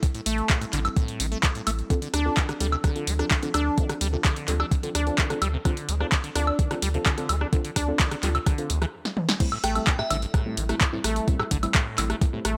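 Lightly reverberant and up-front, this driving, gritty acid house excerpt at 128 BPM in A minor sets a squelchy, resonant acid bass riff with chorus, delay and sidechain pumping over an overdriven, thumpy electronic kick, a punchy analog drum machine of handclaps, hi-hat, snare, toms, rim click, woodblock and crash, a round sine sub bass, and a very quiet, warbling lo-fi pad, while dark, nasal chord stabs enter at 1.9 s as the harmony moves from Am7 to Dm7, a drum fill leads into the drop and its return to Am7 at 9.4 s, and a glassy FM bell flashes briefly at 9.6 s.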